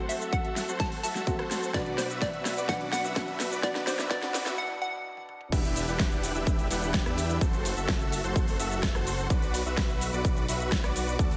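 Festival progressive house at 127 BPM, euphoric and anthemic, opens with a build-up where a hollow, bouncy square pluck melody and a dark, worn grand piano with audible action noise ride over a huge, thick supersaw riff, a faint riser and an overdriven big-room kit with a punchy kick, metallic hats and drum fills, before a short break gives way at 5.5 seconds to a drop where a lush detuned saw bass joins the pumping supersaw and drums in a moderate scoring-stage reverb.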